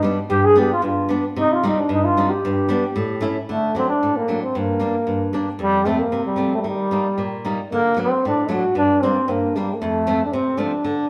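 A solo trombone carries the melody from 0.3 seconds, played in a classical style with a light vibrato and a warm tone that sounds both up front and slightly distant, wrapped in the room's sound. Beneath it, a fingerpicked acoustic flamenco guitar provides the accompaniment, starting the piece alone at 0.0 seconds and sitting close and present in the mix. This short klezmer fragment in 2/4 has a straight feel and a bittersweet yet festive mood, and the pace gradually speeds up from start to finish. The harmony opens by moving through G, C minor and A7, then shifts at 3.5 seconds into a cycle of D, G minor, F and E-flat. The two players perform live together in a stone room, whose reverb gives the recording a wet, echoing character.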